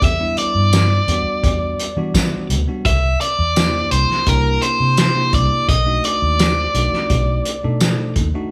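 A bright, overdriven electric guitar leads up front over a brooding soul blues groove built on Em9, C7 and B7#9, with a bell-like, clean tine electric piano in the background, a dark, round, foam-muted fingered bass, and a muffled, gritty, cloth-damped drum kit with a fat snare, tight kick, hi-hat and tambourine, all caught as a band playing live with a moderate large studio reverb in this short clip cut from a longer piece.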